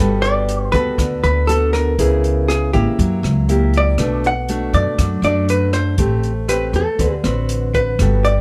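Romantic and breezy, this bossa nova passage in G major moves at 120 BPM in a straight 4/4 and is cut from a longer piece. A dark, clean vintage hollow-body electric jazz guitar carries the melody between G4 and F#5, its picked tone compressed and placed up front. Beneath it, a classical nylon-string guitar fingerpicks a warm accompaniment, while a woody pizzicato upright bass with steel strings holds the low end, both also close and present. An open acoustic jazz kit joins at 0.2 s with hi-hat, rim click and a boomy kick in a small-room setting. The harmony drifts from Gmaj9 through C#m7, F#7b9 and Bm7 to Am9 and D6, and the dry, closely miked sound brings out fine detail in every instrument.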